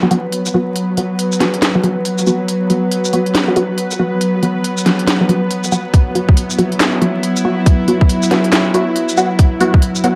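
A dark, crackling vinyl haze and a moderate digital room reverb frame this heavy, meditative deep dubstep fragment, cut from a longer piece, which rides a half-time 4/4 feel with swung sixteenths. A tense, string-like bowed drone sits up front throughout, its sawtooth unison and noise layer blooming slowly with vibrato, built-in reverb and a gritty vintage sampler edge. Alongside it, a muted, deep chord stab plucks short, detuned hits, coloured by phaser and dub echo, while a filter sweep on the stab drives the whole passage as a build-up. A tape-warm garage kit of cracking snare, crisp hats, handclaps and shaker stays up front, sounding re-recorded in a large room. A tight electronic kick joins at 5.9 seconds and drops out at 9.8 seconds, adding weight to the final stretch of the rise.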